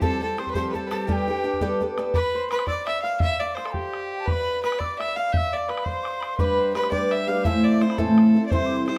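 A boxy, shimmering picked twelve-string acoustic guitar sits up front in this lively, bright Celtic jig in 6/8 at 113 BPM in G mixolydian. The guitar drops out at 2.2 seconds and returns at 6.4 seconds, while a rich, earthy bowed fiddle with light vibrato and plate reverb carries the melody throughout. A breathy wooden whistle with a chiffy attack plays a second line above, joined at 2.1 seconds by a ringing, thumb-plucked Celtic harp, all over a boomy, open bodhran in a moderately reverberant studio space.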